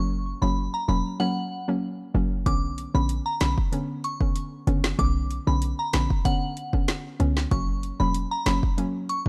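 Hypnotic and bouncy, this short dancehall excerpt moves at 95 BPM in a straight 4/4, set in B harmonic minor over a chord movement from F# to Bmadd9 and back to F# at 7.5 seconds. A glassy, crystalline synth bell carries the melody high above, its vintage FM tone warbling through chorus, tremolo and tape echo. Beneath it, a hollow square-wave pluck with a detuned, mellow edge and a sub octave supplies the accompaniment, pumping against the beat through sidechain and chorus. A short 808-style bass sits up front with a punchy, tight sine body and a fast, decaying attack. At 2.5 seconds an electronic afro-pop drum kit arrives, overdriven and forward, pairing a deep kick and woody snare with metallic hi-hats. The whole piece has a dry, gritty hardware character set in a digital ambience.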